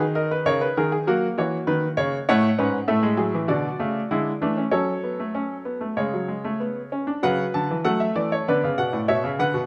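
A classical, baroque-style four-part fugue for solo grand piano in F# minor, this brief excerpt cut from a longer piece moves at 98 BPM in a straight 4/4 with an elegant, lively character. The baby grand has a bright, brilliant, natural tone with short sustain, sitting up front and spanning from G#2 to A5. Close, detailed microphones capture the playing, while a moderate recital hall reverb adds a sense of space around the instrument. The harmony passes through chords such as F#, F#m and G#m7b5/B before settling on C#5 around 6.0 seconds. A new section begins at 7.2 seconds on F#m/C#, moving to Bm as the excerpt closes at 9.7 seconds.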